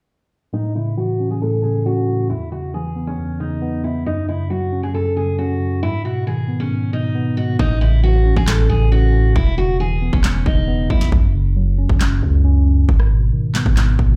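Brooding and dark, this half-time trap excerpt moves at 136 BPM in 4/4, cut from a longer piece. A mellow, clean tine electric piano sits up front as accompaniment from 0.5 seconds, while a bright, picked steel-string acoustic guitar with fresh strings carries the melody in an auditorium-like space until 11.1 seconds, both shaded by a low-pass filter. A filter sweep runs through the opening section before the beat arrives at 7.6 seconds, bringing a deep, long sine 808-style bass with a fast attack and decaying tail, plus an electronic trap kit of hard-clipped kick, sharp snare, rim click and handclaps, re-recorded in a small room and placed up front. The hi-hats are muted through this second section. The chords cycle through A, E5, F#5 and G#m, and the whole mix is bathed in digital ambience, like a big sound system playing in a bare room with large studio reverb.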